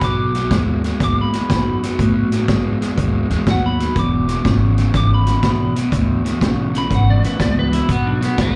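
Electric blues shuffle at 122 BPM with a gritty, rollicking swing, heard as a live club gig through the venue's PA with light reverb, where a bright, crunchy overdriven guitar plays a low riff with slapback echo up front, a slightly broken-up, compressed electric guitar picks the melody with its own slapback, a woody pizzicato upright bass holds the bottom, and a vintage drum kit with punchy kick, medium-tuned snare and hi-hat sits up front with a rolled-off top, over a change from B to E7 and back to B across this 8.6-second cut.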